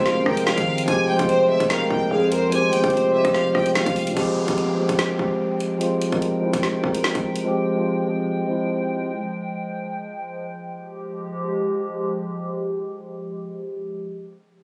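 A menacing, ominous drill excerpt in F harmonic minor at 146 BPM with a half-time feel opens on a distant, lush bowed violin section with vibrato and tape echo, a breathy flute-like synth lead with chorus, a mellow, clean tine electric piano up front, a hollow, airy pad and a growling, buzzy 808-style bass in the background, while an electronic drill kit with a hard-clipped kick, woody snare and warm hats sits up front; a downlifter enters at 4.2 s under a filter sweep, before the pad lingers alone until 14.0 s, all captured in a phone-recorded room with light digital reverb.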